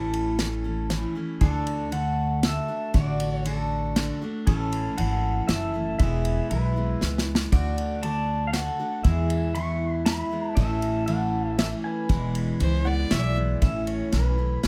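A twangy pedal steel guitar with volume swells carries the melody from the start over a full-bodied picked acoustic guitar and a woody, thumpy upright bass in this sunny, easygoing honky-tonk and classic country excerpt in 3/4 at 118 BPM in A major. An airy, unplugged drum kit of punchy kick, snare and ride played with bundle sticks joins at 0.1 seconds and adds a fill near 7.0 seconds, before a nasal, bowed fiddle slips in briefly at 12.6 seconds, all in a close, detailed sound with light reverb.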